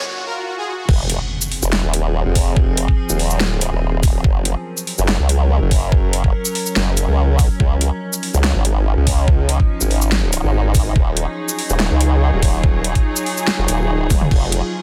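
A half-time 4/4 groove drives this heavy, aggressive wobble dubstep excerpt, where a brief smooth supersaw melody with phaser and delay and an electronic riser and swell give way at 0.9 s to a drop with an impact, an up-front, detuned formant-sweep wobble bass with chorus and overdrive, a knocking layered kick, and a tape-warm drum kit with a huge snare, metallic hats, shaker, toms and crash, while an evolving, morphing wavetable pad with chorus, reverb, 12-bit sampler grit and sidechain pumping sustains the chords and an intimate bowed string section with vibrato, heard briefly at the opening, returns at 11.0 s, ahead of a drum fill at 14.1 s.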